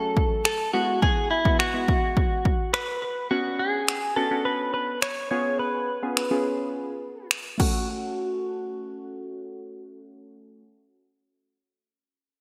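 Driving and bittersweet, this short dance-pop clip moves in a straight 4/4 pulse with a bright 1980s-style digital sheen. A clean electric guitar, recorded direct and picked with a compressed, up-front tone, carries the melody from the first moment, colored by subtle chorus, a low-pass filter and digital delay. Beneath it, glassy digital keys with a sine-like tone, a fast attack and a decaying tail supply the accompaniment, shimmering through chorus and phaser, pumping with sidechain compression and shaped by a filter sweep that runs until 7.9 seconds. A punchy, overdriven house drum kit of kick, finger snaps and crash cymbal sits up front with gated reverb, entering at 0.2 seconds and dropping out at 7.7 seconds, leaving guitar and keys to carry the closing passage. The harmony moves from F#m through Eadd9/G#, Bmadd9 and C#7 before returning to F#m, all set in a lush hall reverb.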